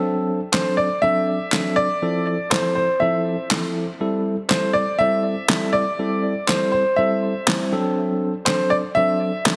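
A straight dance-pop pulse drives this confident fragment, carried by layered electronic handclaps and a fat, overdriven snare that sits up front with the gritty character of a small room. A tine electric piano opens alone at 0.0 seconds, sounding clean and warm as if heard through its own built-in speakers, and lays down the accompaniment over a progression moving from D7 to Fmaj7 and Am7 before returning to D7. At 0.5 seconds a clear baby grand piano joins with the melody in its upper register, intimate and natural, with audible action noise, long sustain and a tape echo trailing its notes. A moderate, lush hall reverb surrounds the parts, while heavy compression gives the whole a dense, radio-ready sound. The clip is cut from a longer piece and ends at 9.6 seconds.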